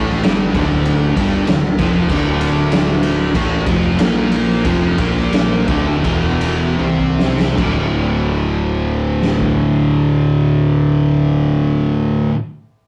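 Brooding and ominous, this short stoner and doom metal excerpt in D minor moves in a straight 4/4 at 74-97 BPM, taken from a longer piece. A bright, double-tracked distorted electric guitar carries the riff alongside two dark, picked fuzz guitars, one sitting in the background and the other very quiet, all spanning D2 to C4 for the full 12.3 seconds. Beneath them a round, overdriven fingered bass with fuzz growls down to D1, and an up-front, gritty garage drum kit with a fat snare, punchy kick, crash, ride and toms plays from 0.1 to 9.6 seconds. The groove slows from 2.1 to 7.6 seconds, with a drum fill at 6.8 seconds driving from the opening Dm harmony into a D5 passage at 7.6 seconds. The rough rehearsal-room sound carries saturation and a moderate reverb.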